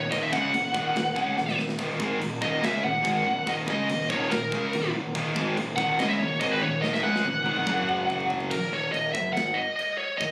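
Dark and epic, this heavy metal excerpt drives at 143 BPM in Eb minor, with a dark, up-front high-gain lead guitar carrying the melody over a bright, distorted rhythm riff joined by a very quiet, sludgy overdriven guitar, a round, punchy fuzz bass, and a tight, airy drum kit with bright cymbals that rolls through fills before the guitar riffs stop at 8.5 seconds, leaving lead, bass and drums to ring on in a phone-recorded room sound with light reverb.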